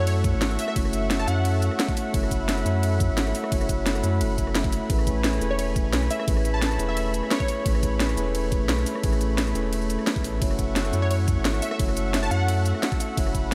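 Liquid drum and bass with a dreamy, uplifting mood, where a mellow tine electric piano and a smooth, vintage-warbling analog pad with sidechain pumping hold F#m7 and Amaj9 chords over a deep, up-front sine sub bass, an overdriven knocking kick and a kit of cracking snare and bright hats re-recorded in a small room, while a punchy, catchy detuned unison lead with chorus and diffuse delay appears in short phrases at 0.0, 5.5 and 11.0 seconds in this cut from a longer piece.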